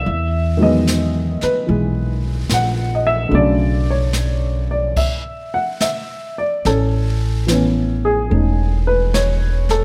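Recorded with light reverb, this short excerpt from a romantic, tender jazz ballad at 73 BPM in a swung 4/4 features a woody, up-front upright piano playing accompaniment alongside a growly pizzicato upright bass and an airy brush kit with dark cymbals and a boomy kick, moving from Emaj7 to Bm7 before a full stop at 5.0 seconds and resuming on Amaj9 at 6.6 seconds.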